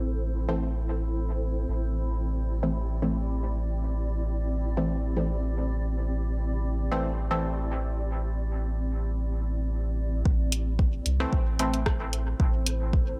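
Cavernous and deep, this dub techno cut from a longer piece moves at 112 BPM in A minor, holding on an A minor chord while a mellow, sawtooth-edged chord stab with chorus, phaser and dub echo runs under a filter sweep for the first 10.3 seconds, above a round, soft sub bass and a blurred, granular cloud pad of slow-attack chords, all three pumping to the sidechain. At 10.3 seconds a tape-warm electronic kick enters up front, joined by a deep house kit of hi-hat and rim click sent through dub echo, both re-recorded in a small room, with light reverb framing the whole.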